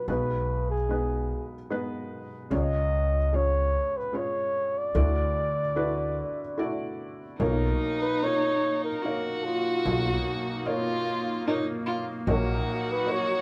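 A breathy, whispered flugelhorn carries the melody with jazz-style vibrato over soft felt-muted upright piano and a woody, thumpy pizzicato upright bass in this heartfelt, intimate acoustic folk-pop ballad in 3/4, with a bowed violin adding an expressive second line and a brassy, detuned analog pad with chorus and phaser entering on sustained chords at 7.4 seconds, all in a lightly reverberant room.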